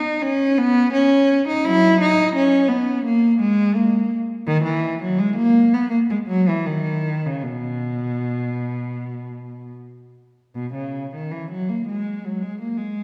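A wet scoring-stage reverb with a 1.9-second decay surrounds this brief extract from a longer piece, with the room heard from further back even as the single bowed cello sits up front. In a baroque-style suite movement in B major and 4/4, the cello carries the whole 13 seconds, its focused tone with vibrato and smooth top ranging from B2 to E4. The mood is flowing and dance-like at roughly 75-86 BPM, shaped by a supple rubato.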